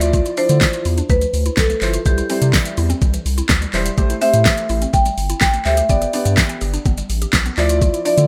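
A straight 4/4 groove at 125 BPM drives this bittersweet dance-pop excerpt, built on a produced electronic kit with a knocking kick, fat snare, warm hi-hats, handclaps and shaker, placed up front with the character of a small room. Underneath, a round analog bass with a deep, nasal, dark tone and a quick filter pluck pumps against the kick, while a concert grand piano plays accompaniment through lush chorus, also pumping in time. A woody, FM-style synth pluck with a sub octave runs arpeggios in the background, treated with chorus, delay and the same pumping. From 0.4 seconds a vintage, band-limited marimba struck with medium hard mallets carries the melody with delay, and a jingly, very quiet tambourine sits close and dry from 0.6 to 7.4 seconds. The harmony moves through Dmadd9, C, Am7 and G before returning to Dmadd9, all framed by a moderate plate reverb and bright 1980s-style digital production.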